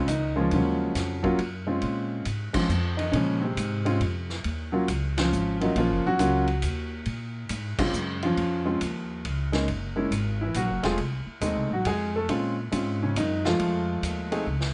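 Swinging in a cool 3/4 at 138 BPM in Bb minor, this jazz piano trio excerpt features an up-front, short-sustained baby grand carrying the melody with plate reverb over woody pizzicato upright bass and a gritty vintage kit with dark cymbals and a punchy kick, with the band hitting accents from 2.5 seconds and a drum fill arriving at 14.5 seconds as the minor-chord harmony turns through altered dominants.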